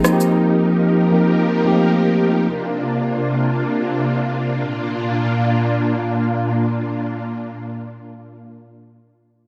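Floating in free time, this soulful amapiano passage opens with a mellow, clean tine electric piano playing up-front accompaniment that stops at 2.5 s, while from the very start a vintage string machine voiced as violas holds sustained chords through 8.5 s, its sawtooth tone slow to bloom, evolving and warbling under an ensemble chorus. A lush hall reverb with digital ambience wraps the whole in a dark, warm production as the harmony moves from F9sus4 through C9sus4 to settle on Bb, in a fragment cut from a longer piece.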